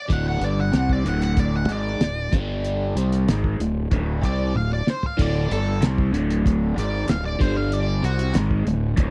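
Classic rock with a sunny, driving mood, this short excerpt from a longer piece moves at 94 BPM in a straight 4/4, centered on D mixolydian as the harmony shifts between D5 and G5 power chords. An octave-fuzz lead guitar carries the melody as a solo from the very start, its dark, distorted tone colored by wah and tape echo, sitting somewhat back from the rhythm section. Beneath it, an overdriven electric guitar plays a bright, double-tracked riff through a phaser, while a fuzz-laden fingered electric bass adds punchy, up-front weight. The cloth-damped drum kit sounds muffled and gritty with a fat snare and tight kick, and it breaks into a fill at 4.5 seconds. A crisp group handclap joins in the background at 5.8 seconds, and the whole recording has a dry, close 1970s-style studio sound with little reverb.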